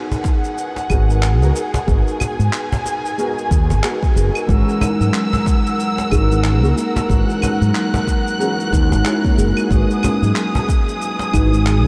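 A felt-muted upright piano, soft and boxy, opens alongside a dark, lush studio string section holding sustained chords and a very quiet bronze singing bowl ringing with slow beating, all sinking into a dreamy mix soaked in an 8.7-second ambient reverb. This is a meditative slice of organic downtempo in G# minor at 92 BPM, with a 16th-note swing, moving from G#m7 to F#7/G# at 4.5 seconds and on to Emaj7/G#. The piano carries ensemble chorus, analog delay and sidechain pumping, while the bowed strings, vibrato-touched and smooth on top, share that pumping motion. Gritty, sampler-style shaker, claves and handclaps, a woody cajon with faint snares, and a deep, overdriven electronic kick lay down the groove, joined at 0.9 seconds by a round, punchy fretless electric bass sitting up front with its own sidechain pumping. At 4.5 seconds a steel tongue drum, struck with soft rubber mallets and close-miked, adds pure, mellow arpeggios trailed by analog delay, carrying the excerpt onward as it is cut from a longer piece.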